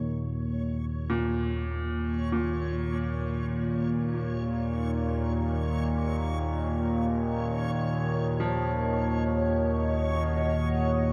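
In free time, this dark ambient drone in Eb minor unfolds as an ominous fragment of a longer piece, resting on a single Eb minor chord. An analog drone sits up front in the low register between Eb2 and Bb2, its vintage sawtooth and pulse-wave tone warbling and evolving under pulse-width modulation and chorus. High above on Db5, a reversed, granular texture of detuned triangle tones fades in across the whole 11.1 seconds, dreamy and swelling inside its own built-in reverb. From 1.1 seconds a bright baby grand piano adds brilliant, open arpeggios between Bb2 and F3, trailed by tape echo. At 7.1 seconds a resonant pad enters with sustained chords from Db5 to Gb5, blending detuned sawtooth, triangle and sine waves with a sub octave, a filter swell and chorus, all of it bathed in a wet cathedral reverb that lingers for 5.9 seconds.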